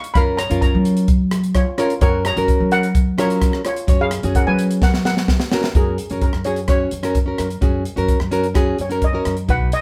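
Calypso in F# major at 129 BPM, bouncy and festive. A shimmering, metallic steel pan carries the melody over fingerpicked, full-bodied nylon-string guitar, woody pizzicato upright bass and a crisp, polished drum kit with a high-tuned snare and tight kick, in a moderate studio reverb heard from further back in the room. A drum fill at 4.8 seconds leads into a steel pan solo from 5.7 seconds to the end of this short cut.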